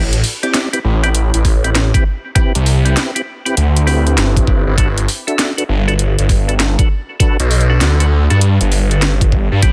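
A thick, swirling detuned saw bass underpins this playful, funky glitch hop excerpt, sitting up front with phaser and saturated overdrive as it holds low sustained notes from the start. The drum and bass kit comes in at 0.1 seconds with a cracking snare, bright hi-hats and rim clicks. An overdriven, knocking electronic kick joins at 1.4 seconds, both drum parts layered, produced and re-recorded in a small room. Over this, a mellow, round percussive tonewheel organ plays dark, clean stabs through chorus vibrato, a slow rotary speaker, tape echo and sidechain pumping. The groove moves at 99 BPM in 4/4 with a swung sixteenth-note feel, shifting from Am7 to Gmaj7 partway through. Digital ambience and a dense, heavily limited modern master give the track a loud, compact finish.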